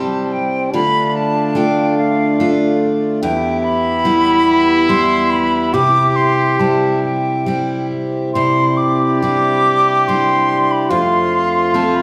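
This Celtic folk slow air is haunting and mournful. It moves at about 71 BPM in 3/4 with a rubato feel, and it is cut from a longer piece. A wooden flute carries the melody in a high register, airy and distant, its vibrato and tongued notes giving the line an expressive voice. Beneath it a brilliant, punchy trombone plays a second line in a classical style, set back in the room, while a picked steel-string acoustic guitar sits up front with a bright, auditorium-like ring. A pedal harmonium holds reedy, breathing chords a little lower in the mix, its mellow tone colored by a boxy small-room quality. The performance sounds as if captured in a church or concert hall, wrapped in a wet recital-hall reverb, as the harmony moves from C through Dm and Em, returns to C and Cadd9, and reaches F at 10.9 seconds.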